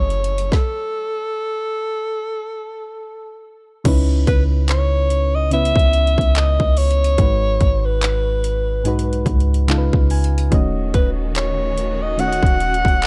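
Trap drums with a hard-clipped kick, woody snare, metallic hats and handclaps drive this swung, moody, late-night contemporary R&B fragment alongside a deep, boomy 808-style bass, while soft, round electric-piano-like synth keys warble with chorus and add a brief fill beneath a breathy, subtone alto saxophone melody carried on tape echo, and a lush, distant bowed string section sounds briefly at the opening, ahead of a stop from 0.5 to 3.9 seconds, before returning at 10.5 seconds, set in a dark digital ambience.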